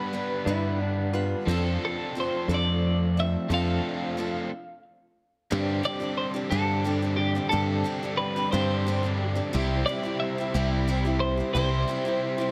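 A bright, twangy twelve-string electric guitar carries the melody through this hopeful, nostalgic rock excerpt in a straight 6/8, its clean, compressed tone shimmering with tremolo. Beneath it, a boxy parlour-style steel-string acoustic guitar picks out the accompaniment, finger squeaks and all, while a crunchy, double-tracked overdriven guitar plays a riff. A round, dark picked electric bass sits up front as the loudest part, and a mellow tonewheel organ holds very quiet sustained chords through a rotary speaker with chorus vibrato. Near the start, a clean lap steel guitar adds a short, warm slide line. The band hits a stop at 4.5 seconds before a second section opens at 5.5 seconds on a suspended chord, all set in light reverb and digital ambience.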